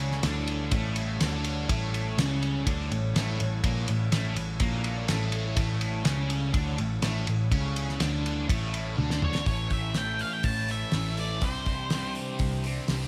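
A fuzz guitar drives this hypnotic, dark psychedelic rock excerpt at 124 BPM in 4/4, its bright, double-tracked riff sitting up front with distortion and phaser. Beneath it, a picked electric bass gives a round, foam-muted low end, while a cloth-damped acoustic drum kit thuds from a small room with a fat snare, tight kick and dark cymbals across hi-hat, ride and toms. A dark studio string section holds soft, sul tasto chords in the background, floating and smooth. The harmony rests on A7 before a drum fill at 9.0 seconds leads into a second section on A, then Cadd9. An octave-fuzz lead guitar enters at 9.2 seconds with a shadowy, distorted melody colored by analog delay, in an echo-heavy mix that carries little reverb.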